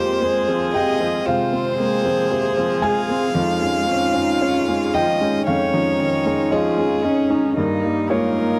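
A rubato 4/4 pulse at 57 BPM carries this fragile, longing neoclassical piece for piano and strings, where a soft, felt-muted upright piano with audible action noise sits up front beside a rich solo violin melody played sul tasto with light vibrato and an airy bow, a warm cello second line, a dark viola accompaniment in the background, and a reedy, breathing hand-pumped harmonium holding sustained chords, captured in a dry, close 1970s-style small room as the harmony moves from Fm to Dbadd9/F at 3.4 seconds and Eb/G at 7.6 seconds.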